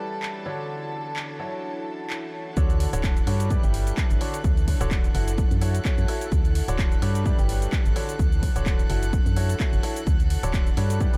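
Uplifting and joyful, this piano house passage opens with a clear, intimate concert grand piano riff whose audible action noise and deep bass sit beneath a diffuse ambient delay, all breathing with sidechain pumping. Around it, a studio violin section holds soft-attack, pure, floating bowed chords, while a deep, moody pad with a warbling vintage chorus and built-in reverb stays dark in the background. A tape-warm analog drum machine enters at 0.2 seconds with handclaps, hi-hat and shaker, giving a light swung lilt to the sixteenths. The drop arrives at 2.6 seconds, when a hollow, organ-like FM bass with a fast, percussive attack comes in alongside an overdriven, layered electronic kick that sits up front with the ring of a large room. The harmony circles through bright major-seventh, minor-seventh and sixth chords, keeping the mood buoyant as this cut from a longer piece rolls on.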